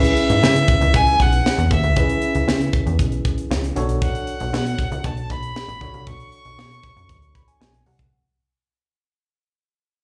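This late-night, funky slice of early-eighties boogie funk opens with the full band together at 117 BPM in a straight 4/4: a plucky analog bass, a tight funk drum kit, a tine electric piano and a bowed fiddle carrying the melody. The fiddle is a single player with a rich, smooth, even tone and light vibrato, sitting up front yet bathed in plate reverb, slapback echo and tape echo. Underneath, the punchy, nasal synth bass has a filter pluck with a fast attack and a wave-folded edge, and the acoustic kit brings a high-tuned snare, hi-hat and a tight kick from a small room. The worn electric piano, slightly out of tune and lightly overdriven through its built-in speakers, adds slapback-echoed accompaniment and a brief fill from 7.1 seconds. The harmony moves from C#m7 to Bm9 at 3.8 seconds, and the whole cut fades out as though heard through a club's PA with its reverb around it.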